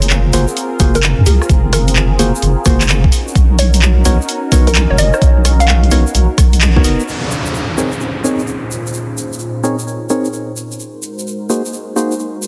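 Swung two-step UK garage at 129 BPM in Bb minor, soulful and moody, opens on a punchy analog drum machine of handclaps, hi-hat and rim click over a deep, wobbling bass, with an overdriven, knocking electronic kick entering at 0.8 seconds and running to 6.8 seconds while the drum machine and bass run to 7.0 seconds; a hollow, bouncy square-wave pluck carries the melody with delay until 5.8 seconds, dark, full-bodied organ stabs with delay recur throughout, a smooth, detuned analog pad pumps underneath, and a grainy egg shaker sits close, until a downlifter enters at 7.1 seconds as the chords move on, in a dense, heavily limited master with light reverb, cut from a longer piece.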